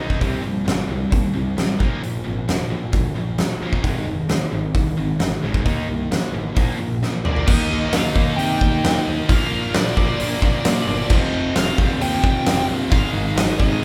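A straight, driving 4/4 hard rock groove comes from a huge, up-front arena drum kit with a punchy kick, fat snare and bright cymbals, ringing in a big room. Beneath it sit a bright high-gain guitar riff, a sludgy overdriven second guitar and a growly fuzz bass, all set back in the mix. A drum fill at 7.0 seconds leads into the next section. A smooth overdriven lead guitar melody enters at 7.2 seconds, and a double-tracked high-gain guitar joins the riff as the new section begins at 7.5 seconds, keeping the whole band's aggressive live-room energy in this excerpt cut from a longer piece.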